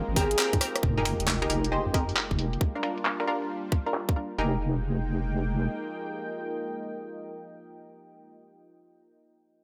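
UK garage in a two-step style at 135 BPM in F minor, this moody, skippy fragment from a longer piece swings its sixteenths over a tight, overdriven electronic kick and a garage kit of finger snaps, handclaps, hi-hat and rim click, with a drum fill at 0.6 seconds and a sub drop impact from 0.8 to 2.6 seconds as filter sweeps run across the drums and the bright, punchy chord stabs with dub echo. A deep, detuned wobble bass sits up front beneath a smooth analog pad and a dark, warbling vintage ambient pad, both pumping with sidechain compression through chords moving from Abmaj9 to Fm11 and Gm7. A breathy, flute-like synth lead with tremolo and dub echo touches a single note near the start, and the mix carries a light digital ambience.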